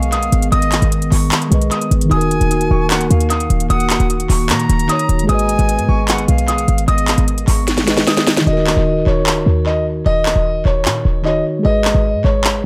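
A dry, echo-heavy mix frames this menacing, hard-hitting half-time trap excerpt at 151 BPM in Eb minor: a dark, boxy grand piano with tape echo carries the melody over a clean tine electric piano, while a reedy, airy flute adds a second line until 7.3 seconds and a warbling lo-fi pad with chorus sustains chords in the background until 8.4 seconds; beneath them, a punchy, tight 808-style bass sits up front and a crisp electronic trap kit with sharp snare, hi-hat and handclaps plays a fill before its hats fall silent at 8.5 seconds.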